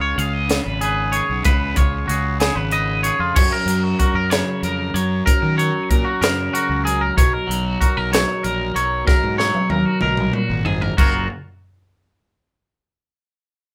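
Math rock and midwest emo in a bright, intricate mood, moving at 63 BPM in 6/8 in F# major, with one clean, twangy, up-front electric guitar playing accompaniment beneath a second, warm, scooped picked guitar spinning arpeggios, a growly, overdriven fuzz bass, and a crisp, punchy fusion drum kit with a high-tuned snare, gritty saturation and a pumping small-room sound that plays a fill from 9.1 to 11.0 seconds, the whole band captured live in one room with light reverb.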